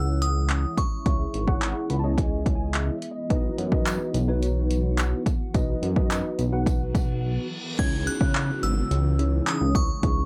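A straight 4/4 pulse from a punchy analog drum machine, with kick, hi-hat, handclaps and crash roughened by vintage sampler grit, drives this confident, energetic dance-pop section, where an up-front glossy synth bass, a mellow tine electric piano heard through built-in speakers that plays a fill at 1.6 seconds, and a dark, shimmering pad in the background all pump to the sidechain, while a jingly tambourine joins faintly at 3.9 seconds, a reverse cymbal and downlifter lead into a short break at 7.2 seconds, and a crystalline FM synth bell with phaser and tape echo carries the melody at the opening and again in the closing section.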